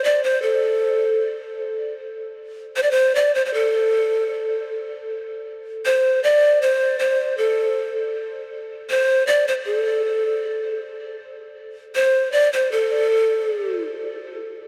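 A lone set of large cane pan pipes opens the excerpt, breathy and hollow, with a chiff at the start of each tongued note. This is a wistful, earthy fragment of Andean folk in A minor pentatonic, moving at an unhurried 78 BPM in a straight 2/4. The pipes carry the whole performance from 0.0 to 13.8 seconds, holding a steady, straight tone within the narrow span of A4 to D5. They sit up front, trailed by a diffuse ambient delay, while a huge reverb with a 4.7-second tail soaks the mix and gives it a dreamy, cavernous haze. The same melodic section comes around twice, the second time beginning at 8.1 seconds, before the cut ends.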